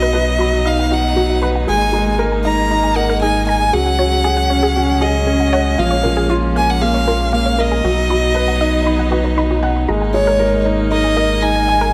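From the first second, all five parts sound together in this moving, cinematic electronica excerpt, cut from a longer piece and set at 117 BPM in a straight 4/4 with a G# dorian colour. A clear, focused solo violin carries the melody up front, its bowed line sung with vibrato, while a rich string quartet holds smooth, sustained chords beneath it with a close, chamber intimacy. A felt-muted upright piano plays a soft, mellow riff with short sustain, touched by tape echo. Further back, an analog pluck built from detuned sawtooth tones spins arpeggios through chorus and tape echo, with a filter sweep running across the whole 11.9 seconds. A round, deep analog bass anchors the low end, sitting up front with an evolving, ring-modulated edge, as the harmony moves from B through G#sus2, C#sus4 and A#m7 before returning, all placed in a moderate scoring-stage reverb.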